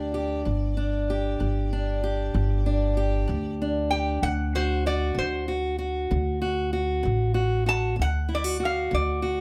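A light reverb surrounds this short, laid-back excerpt of acoustic country blues, cut from a longer piece, with all three instruments up front at an unhurried 64 BPM in a straight 12/8 and tuned to A4 = 441 Hz. A metallic, nasal lap resonator guitar, played with slide and fingerpicks, sings a soulful melody over a bright, boxy parlour steel-string guitar, fingerpicked with audible finger squeak. A woody, thumpy upright bass on gut strings plucks dark low notes as the harmony moves from G5 to D at 4.2 seconds.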